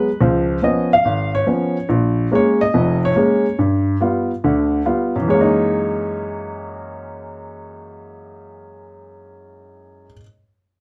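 A swung 4/4 pulse at 142 BPM, with eighth notes swung at 65%, drives this short cut from a longer jazz piece in F# mixolydian, tuned to A4 = 438 Hz. A grand piano takes the solo from the start until 10.2 seconds, spanning E#1 to E#5 as it moves through C#7, A#m7 and G7 before arriving on F#13 at 5.3 seconds, where a new passage begins. The piano sounds intimate, natural and up front, with its action noise clearly audible, while a small, reverberant room lends the whole a sophisticated, warm atmosphere.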